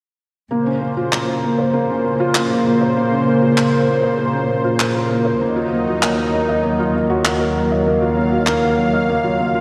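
At 0.5 seconds a felt-muted upright piano, a lush unison pad and a dark chamber cello section enter together, opening this cinematic, melancholic piece of piano and strings electronica cut from a longer work. The piano carries a riff up front, its tone soft, mellow and intimate with thick felt and short sustain, colored by analog chorus and a diffuse ambient delay. Alongside it the pad, also up front, holds sustained chords, thick, nasal and bright from detuned sawtooth voices with chorus, a soft attack and a long release. The cellos supply the bass, bowed sul tasto with light vibrato for a close, shadowy chamber ensemble sound. Acoustic handclaps with a small-room, brushed character join at 1.1 seconds over a straight 4/4 pulse, while the harmony moves from a minor chord with an added ninth to another at 5.4 seconds. The whole mix sits in a wet hall reverb with a 2.8-second decay, giving it a dreamy, reverb-soaked atmosphere.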